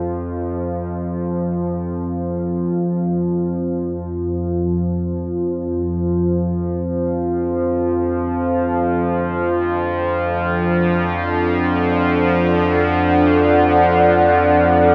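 An evolving, wave-folded analog drone with chorus sits up front in this vast, ominous ambient fragment, joined at 9.8 seconds by a deep, moody analog pad of sustained chords treated with chorus and phaser, all bathed in a huge, wet reverb with a 7.7-second tail.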